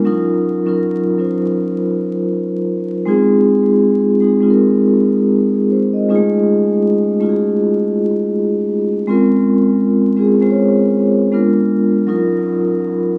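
Melancholic and hazy, this hip hop fragment, cut from a longer piece, features a solo vibraphone played with soft mallets, its mellow, ringing tone shimmering with a slow motor vibrato and sitting up front. Cassette tape coloring and tape echo soften the vibraphone as it moves through minor ninth and altered dominant chords over a gently swung 16th-note feel, shifting into a new section at 3.1 seconds. Vinyl crackle and a wet studio ambience frame the recording.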